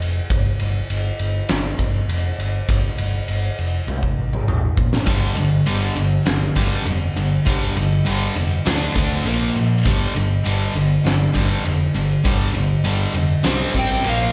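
This hard rock fragment sounds like a band playing live together in one large studio room, with a moderate reverb giving it a roomy, arena-sized weight and a swaggering, powerful mood in a straight 4/4. A huge acoustic drum kit sits up front with a punchy kick and fat snare, playing across kick, snare, ride cymbal, splash cymbal and toms, and a drum fill from 3.9 to 5.1 seconds sets up the full band. Underneath, a growly, amped electric bass is picked with an overdriven bite, anchoring the low end from the start. At 5.1 seconds two rhythm guitars join on the riff: a crunchy overdriven guitar placed up front, and a scooped, high-gain distorted guitar with a bright edge sitting further back, together riffing through power chords on G, D, B-flat and C. At 13.8 seconds a bluesy, warm distorted lead guitar slips in with a brief high phrase just as the fragment cuts off.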